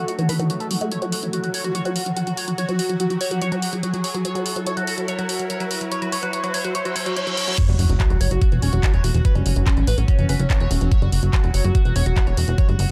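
A straight 4/4 pulse at 144 BPM drives this psychedelic, alien psychedelic trance cut in F# minor, where a gritty, screaming overdriven synth lead with phaser and digital delay, a bubbling stepped-filter texture holding sustained chords, a woody wave-folded pluck riff with dub echo, all three pumping to the sidechain, and a drum and bass kit of bright hats, handclaps and crash build from the opening under filter sweeps, a riser and a reverse cymbal until the drop at 7.6 s. A knocking electronic kick and a punchy, funky plucky analog bass then arrive up front with an impact in a dry mix.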